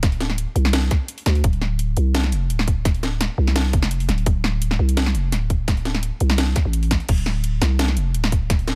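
A half-time groove at 170 BPM in 4/4 drives this dark, heavy drum and bass fragment in D minor, running the full 8.8 seconds as a single section. A tight, overdriven electronic kick sits up front beside a layered kit of cracking snare, bright hi-hats and crash cymbal, both drum parts treated with overdrive and studio reverb. Alongside them, a growling, buzzy 808-style bass, also up front, with a fast attack and decaying tail moves between D1 and D2, all in a close, dry mix.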